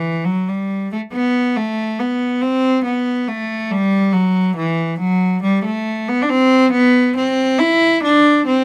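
A lone cello opens the recording and carries it alone from 0.0 to 8.6 seconds, playing a solemn, flowing baroque-style suite movement in triple metre. The bowed line moves with a free, rubato feel and stays between E3 and E4. Its gut-string tone is rich and reedy, played in period style by a single player. The instrument sits up front, caught by close, detailed microphones with little reverb. The passage is cut from a longer piece.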